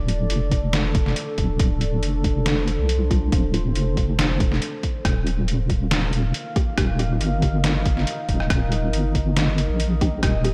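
This brooding, dark stretch of deep dubstep opens in a light digital ambience, cut from a longer piece and moving at 139 BPM in a half-time 4/4 with a slight swing on the sixteenths, set in D phrygian. Up front sits a deep, soft wobble bass built from square and sine tones, detuned and compressed with chorus, sustaining low beneath a moody vintage pad whose warbling sawtooth unison and sub octave swell in slowly through chorus and built-in reverb. Muted, detuned sawtooth chord stabs pluck briefly in the background at moments such as 3.1 and 6.6 seconds, trailing dub echo and analog chorus. A sampler-style trip hop kit of hi-hat, rim click and a medium-tuned snare sounds pitched down, muffled and overdriven, while a layered electronic kick, deep and overdriven, carries the sense of a large room. The harmony holds on Dm before shifting to Eb at 5.0 seconds, keeping the mood heavy and shadowed.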